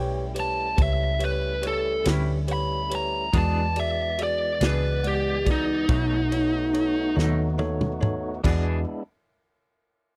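Dry and close, this has the feel of a 1970s studio session, with the playing heard up front. It is a soulful, swaggering slow blues in 12/8, taken from a longer piece and moving through A7, E7 and B7 before settling back on E7. A biting, overdriven lead guitar carries the melody as a solo until 7.1 seconds, backed by a bell-like tine electric piano and a fat tonewheel organ holding sustained chords, lightly overdriven and spun through a fast rotary speaker. Underneath, a vintage foam-muted fingered bass gives a dark, round low end, while a natural country drum kit with a punchy kick, medium-tuned snare, ride, crash and toms drives the groove and plays a fill from 7.2 to 8.4 seconds. A clean, twangy electric guitar with tremolo joins the accompaniment at 2.1 seconds.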